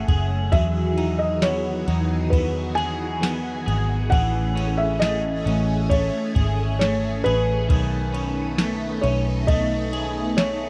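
In this floating, dreamy dream pop excerpt in E major at 67 BPM, a felt-muted upright piano carries a mellow, intimate melody through a digital delay, its thick felt and audible action noise close at hand. Beneath it, a phased string machine holds bright, swirling sawtooth chords with a slow attack, colored by ensemble chorus and phaser. An electric guitar at the edge of break-up picks arpeggios in the same register, slightly broken-up, with analog chorus and digital delay. A dark, round, foam-muted electric bass sits up front, and a soft vintage rhythm box enters at 0.1 s with a deep kick, crisp snare, ride cymbal and tambourine, dry and analog in tone. The harmony moves from Amaj7 through Emaj9 and back to Amaj7 before landing on B13 at 7.7 s, all in a straight 4/4. The sound has little reverb, and worn cassette tape adds a warbling pitch drift over the whole mix.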